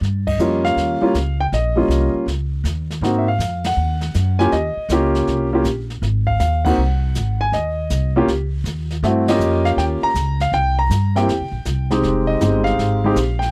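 Swinging and sophisticated, this jazz piano trio moves at 160 BPM in 4/4 with a firm swing on the eighth notes, centered in Eb mixolydian. The upright bass anchors the low end from the first beat, its pizzicato tone woody and up front. A brushed drum kit sits further back, giving an airy, polished feel with dark cymbals, a medium-tuned snare and a boomy kick. The concert grand piano carries the melody from 0.3 seconds, warm in tone with a deep bass register and placed close to the listener. The harmony moves between Eb7 and Ab7 before turning to C7 and settling on Fm7, while the whole band hits accents at 0.2, 3.6, 6.6 and 9.2 seconds. A light reverb softens a dry, close 1970s-style studio sound in this short excerpt cut from a longer piece.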